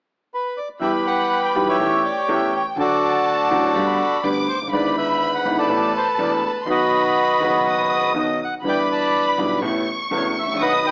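Heard through an AM radio sound with a large studio reverb, this passionate, tense tango excerpt moves with a rubato feel as a reedy, dark bandoneon carries the melody up front from 0.3 seconds, joined at 0.8 seconds by a close bowed violin section singing a high second line with vibrato and portamento and a smooth, vintage grand piano laying down a deep-reaching accompaniment.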